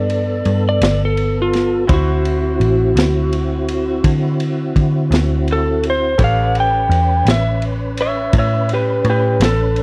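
A dark, slightly broken-up electric slide guitar plays a swaggering solo up front from the start of this laid-back slow blues in D mixolydian, moving at 56 BPM in a straight 12/8 over G13, D13 and A9 chords. A round, foam-muted picked bass sits up front beside it, while a tonewheel organ holds lightly overdriven chords through a slow rotary speaker with chorus vibrato and key click, and a clear concert grand piano stays in the background. From 0.1 seconds a gritty, saturated breakbeat kit with a punchy kick, high-tuned snare and ride cymbal joins, its top rolled off, all captured in a dry, close 1970s-style small room.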